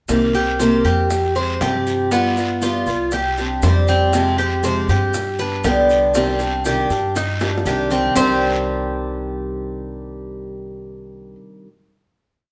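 A bright, metallic Cuban tres up front spins an arpeggiated guajeo on double strings over a boxy, picked archtop guitar strumming with muted slaps and finger squeak, a woody pizzicato upright bass playing a tumbao that anticipates the chords, very quiet low-tuned bongos in steady eighths, and a raspy guiro and grainy maracas in the background, in a danceable, nostalgic Cuban son and guajira piece in C minor at 119 BPM, set in a reverberant live room, where a drum fill from 7.4 s leads the percussion out at 8.3 s and the strings ring on a final chord to 11.7 s.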